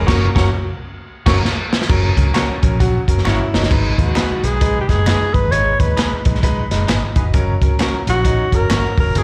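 A crunchy breakbeat drum kit drives this uptempo 1960s-style soul cut at 132 BPM in 4/4, with a lightly swung eighth-note feel, gritty tight kick, and dark cymbals placed up front. The mood is passionate and driving in G# minor: the band hits accents over an F# chord through the opening bars, drum fills mark each turn, and the harmony moves to G# minor before returning to F# at 7.3 seconds. A round, foam-muted fingered bass anchors the low end. An intimate baby grand piano with audible action noise and a compressed, twangy electric guitar stab out the accompaniment, both carrying a slapback echo. The alto saxophone sounds briefly at the start, then returns at 3.3 seconds to lead with jazz-style vibrato and breathy subtone, also touched by slapback echo. Low-tuned, thick-skinned congas join faintly at 1.9 seconds, followed shortly by very quiet finger snaps, and the whole is heard as a live gig through the venue's PA with a recital-hall ambience.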